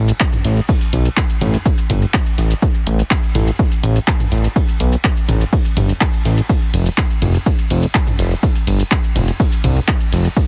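A straight 4/4 pulse is driven by a punchy analog kick placed up front, joined by an analog drum machine whose handclaps, hi-hat, ride, shaker and toms pump with sidechain, plus a very quiet acoustic kit adding hi-hat, ride and a medium-tuned snare played with bundle sticks. Underneath, a fat, detuned analog bass blending sawtooth and triangle waves, wave-folded and swept by a filter, sustains low between F1 and C2 and pumps with sidechain. This hypnotic, dark melodic techno fragment, cut from a longer piece, sounds dry and heavily compressed, with a radio-style sheen.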